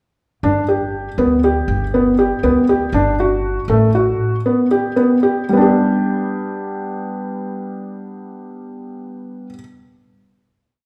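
Set in an uneven 5/8 metre with lopsided beats, this short, complete chamber piece feels hopeful yet restless. A felt-muted upright piano carries the music from start to finish with an arpeggiated ostinato in its middle register; its tone is soft, mellow and intimate, sitting up front in the mix, with the thin felt and the audible action noise lending it a natural, close-up character. Beneath it, a pizzicato upright bass with steel strings adds a woody, warm foundation of root-and-fifth notes on the main beats before dropping out at 4.1 seconds. The harmony moves from G to D/G and on to Gmaj7 as the pace slows, then settles on a final G chord at 5.5 seconds, which the piano holds until 9.6 seconds. A wet recital hall reverb with the resonance of a church or concert hall surrounds the playing.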